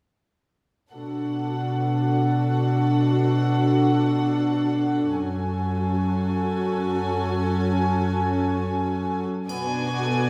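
An up-front, softly attacked cello section anchors this sorrowful, moving cinematic film-score passage from 0.9 s, beneath a floating, pure violin section and a dark, woody, lush viola section as the harmony moves from Bm7 to F#madd9 and back in the reverberant space of a church or concert hall, before a second violin section takes a brief melody and a close, dry triangle joins at 9.5 s.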